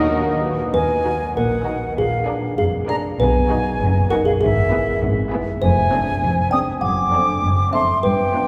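Veiled, con sordino violin, viola, cello and double bass sections open this playful, whimsical film cue in Eb minor at 99 BPM in 2/4, with an airy silver concert flute up front on a second line, a very quiet, distant clarinet in the first 0.7 seconds, and then a tinkling, slightly out-of-tune music box joining the melody from 0.7 seconds, the whole magical, mischievous passage set in a cavernous cathedral-like reverb.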